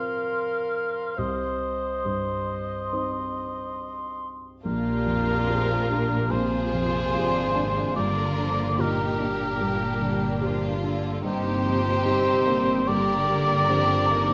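Rubato, uneven beats at 72 BPM carry this longing, bittersweet cinematic film score in C minor, cut from a longer piece, where a dark, short-sustained baby grand piano and a mellow, up-front cor anglais run throughout alongside an airy, distant flute and a present clarinet that are both gone by 4.3 seconds, before bowed strings arrive at 4.6 seconds: an expressive, lush violin section carries the melody over a focused second violin line, with portamento violas in the background and smooth-topped cellos and close double basses in the bass, the whole ensemble set in a wet scoring-stage reverb.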